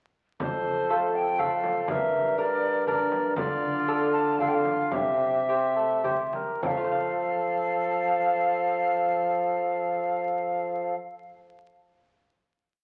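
At 0.4 s a stately, festive Renaissance-style consort dance in triple time begins, with all five parts together: an airy alto recorder carrying the melody up front, with vibrato and a woody, tongued chiff. Beneath it a warm cor anglais adds a lightly vibrato second line in sustained chords that follow the rhythm of the tune, while a dark, smooth-topped bassoon holds the bass. A delicate fingerpicked lute with double gut strings, some doubled at the octave, marks bass notes and chords on the beats, and a soft-handed frame drum taps out a dance rhythm. The music slows as it moves toward a final chord at 6.6 s, and the lute rings on alone until 11.8 s. A reverberant recital-hall ambience and the crackle of a very old 78 rpm record give the sound an antique, faraway cast.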